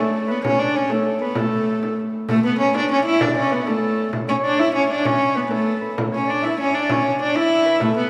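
A bowed, fretted viola da gamba carries the melody from the first moment, heard together with a Celtic harp and a bass recorder carrying a second line in this rustic, festive medieval dance in a straight 6/8. The gamba sits up front and close, its tone warm and boxy with a soft attack, an airy bow and a light vibrato, its notes ringing. Further back, the harp is fingerpicked and ringing, while the breathy, bright bass recorder adds a tongued chiff, a reedy wooden colour and its own vibrato. A small, bright frame drum enters at 0.4 seconds, and the music moves into a new section at 2.3 seconds before this excerpt, cut from a longer piece, breaks off at 8.1 seconds. The whole ensemble is bathed in a wet concert-hall reverb, and a small-room ambience can be heard as well.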